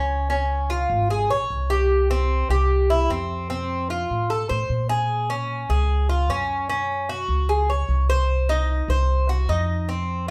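A roomy, reverberant studio sound places the players a little back in a large space, giving this short passage cut from a longer piece a soft halo around every note. It is a Cuban son and guajira groove at 150 BPM in a straight 4/4, with a nostalgic, sultry mood. The Cuban tres carries the harmony in picked arpeggios between C4 and Db5, its doubled strings ringing bright and metallic, with some courses sounding in octaves. Beneath it, the upright bass plays pizzicato lines from Ab1 to Bb2, woody and thumpy, sitting up front alongside the tres for the whole 10.3 seconds. The chords move from Db to C, F, Bbm7 and Gbsus2 before settling on a Cdim at 8.3 seconds, leaving the phrase hanging with a bittersweet pull.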